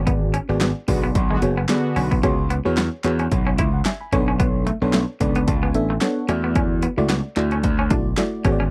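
A tremolo-laden FM electric piano and an overdriven, gritty slap bass open this dry, close-miked slice of late-night, danceable early-eighties boogie funk, joined at once by a clean, hollow-body guitar riff and a punchy, layered electronic drum kit with a huge snare and bright hats, while faint vintage handclaps sit in the background, fat detuned analog synth brass adds a brief chorused second line inside the opening band accent between 0.9 and 2.1 seconds, and the dark-toned electric piano takes a fill from 4.9 seconds over seventh and ninth chords.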